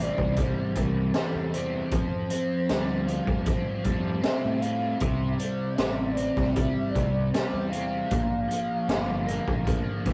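Trippy and hazy, this short psychedelic rock excerpt moves at an unhurried straight 4/4 over C, Fadd9 and Bb, with a biting, double-tracked overdriven guitar riff run through a rotary speaker sitting up front. Beneath it, a dark, round fuzz bass rumbles in the low register, and a raw garage drum kit joins at 0.2 s with a boomy kick, a high-tuned snare, hi-hat and a gritty, rolled-off top. An airy, hollow concert flute floats a soft-attack melody with vibrato through tape echo, all captured in a rough rehearsal-room recording with saturated character and a small room's moderate reverb.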